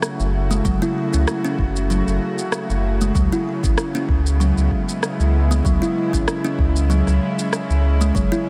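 A round, up-front sub bass anchors this short organic downtempo excerpt, entering at 0.2 seconds with a deep, mellow sine tone that pumps with the sidechain. Around it, a kalimba plays woody, close-miked arpeggios with short thumbnail plucks, its dry attack trailed by delay, while a string-like drone of detuned sawtooth layers holds sustained chords with slow attack, vibrato and a bright, tense edge, also pumping with the sidechain. A layered electronic kick joins at 0.6 seconds, and a produced rim click and shaker tick along in 4/4 at 96 BPM with a light 16th-note swing. The harmony moves from F#m7 to C#m7, and just before the cut a quartz singing bowl rings in at 8.2 seconds, pure and softly beating. The mood is meditative and warm, the whole mix dreamy and soaked in a huge ambient reverb.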